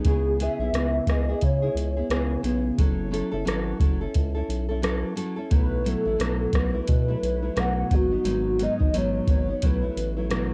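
Indie and bedroom pop in C# minor at 88 BPM with a swung 16th-note feel, this wistful, mellow excerpt moves through C#m7, F#m7, B7sus4 and G#m7 as a fingerpicked nylon-string guitar, full-bodied and up front with audible finger squeak, carries the accompaniment under chorus, vibrato and cassette tape coloring. A warbling, detuned lead synth sings the melody through ensemble chorus, tape and analog delay, while a round, nasal analog bass with transformer saturation holds the low end. A soft vintage rhythm box with a deep kick, metallic hats and rim clicks sits up front in a large room, the whole home cassette recording carrying a light reverb.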